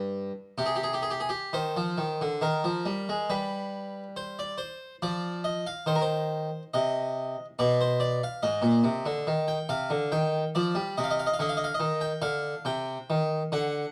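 Moving in a flowing triple metre with a rubato feel, this short excerpt from a longer baroque-style suite movement unfolds at an unhurried, solemn pace. A single harpsichord carries everything on its own from the first moment to the end at 13.9 seconds, its plucked Flemish-style tone sounding full and rich from two sets of strings, and it sits up front in the mix. The part ranges from G2 up to G5, giving the instrument both a weighty low register and a clear upper line. The harmony begins unaccompanied by chords before settling into C minor at 0.6 seconds, then passes through E-flat, G7 and a C minor chord over E-flat, pauses on a bare moment at 7.6 seconds, and moves through a rootless A-flat before resting on a C minor add-nine. A moderate reverb from a large studio surrounds the instrument, and the dark production lends the whole passage a grave, stately character.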